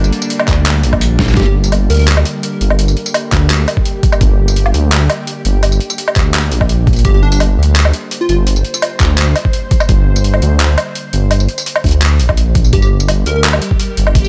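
Heavy and cinematic, this half-time drum and bass excerpt rides a deep, rumbling detuned saw bass and gritty, overdriven sampler-style drums with a thumpy electronic kick, under a tense, string-like bowed drone with sidechain pumping, while a punchy plucky unison lead with delay darts in briefly and a reversed, dreamy swelling texture appears in the background at 13.5 seconds.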